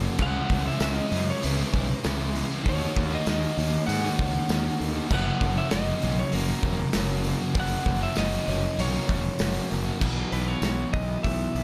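A hazy, brooding shoegaze and dream pop rock excerpt at 98 BPM opens with a wall of guitars, thick dark fuzz, a sludgy double-tracked riff that drops out at 10.0 seconds, and a hollow-bodied overdriven part wrapped in reverse reverb, over a faint shimmering octave-doubled twelve-string with finger squeak and a round, up-front fuzz bass. A loose small-room drum kit with a tight kick and a pumping-room feel arrives at 0.2 seconds beside a compressed, slightly broken-up lead melody trailing analog delay, and a background jingly tambourine joins at 0.8 seconds, as the music moves through C#m7, D#m7b5 and F#7 before settling on Bsus4.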